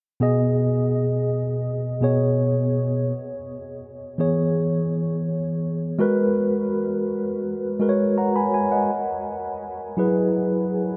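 Romantic and dreamy, this short R&B excerpt drifts along at 83 BPM in a straight 4/4, set in B major. A lone tine electric piano carries the whole passage from 0.2 to 11.0 seconds, spanning B2 to B5 with a mellow, clean tone that sits direct and up front. Its chords move from B6 to E6, then to G#m9, and settle on F#9sus4 at 8.9 seconds, giving the harmony a lush, unresolved glow. The mix is soaked in a huge ambient reverb with an eight-second tail, and its soft top end gives the sound a hazy, veiled quality. Cut from a longer piece, it feels like a suspended moment of late-night tenderness.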